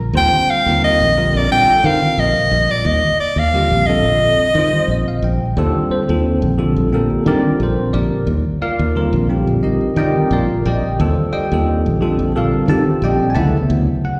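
A lightly swung 4/4 at 88 BPM carries this soaring, slick jazz excerpt in Eb Lydian, with a bell-like tine electric piano comping through phaser and slapback echo alongside a growly, direct fingered electric bass, both running from the opening to about 14 seconds. An up-front, close-miked soprano saxophone sings the melody with vibrato and scooped notes until 5.2 seconds, while the piano slips in a fill from 4.5 to 5.6 seconds, overlapping the saxophone's final phrase, and the harmony rests on Ebmaj9 before shifting to Dmaj9 at 13.4 seconds. The sound is that of a live gig heard through the venue's PA in a recital-hall reverb, with a faint haze of lossy compression.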